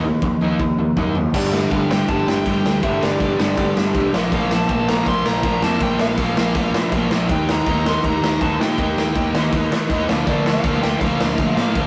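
A punchy, gritty garage drum kit sits up front in this energetic, upbeat punk rock excerpt at 161 BPM, opening with a fill in a bright stone room as the band drives ahead in straight 4/4. Two overdriven guitars play the riff, one with a hollow-body tone and the other set in the background, over a growling, direct-and-amped picked bass. A dark, distorted bluesy lead guitar enters high above them at 1.3 seconds. The chords move from Eb5 through G5 and Bb5 to Eb and Bb/D, and the rough rehearsal-room recording carries light reverb and saturation.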